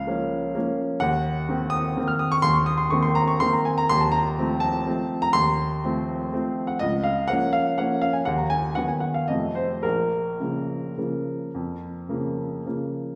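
Elegant and nostalgic, this 13.2-second fragment of a classical piano waltz in Bb minor moves in 3/4 with a flexible rubato that drifts between 102 and 134 BPM, tuned slightly low to A4 = 436 Hz. A solo baby grand piano, warm, open and up front, spans Bb1 to F6, turning through Cm7b5/Eb and F7/Eb before a brief B/D# and an F7b9 resolve home to Bbm at 9.8 seconds. A wet recital hall reverb places the listener further back in the room, lending the piano a lingering, spacious glow.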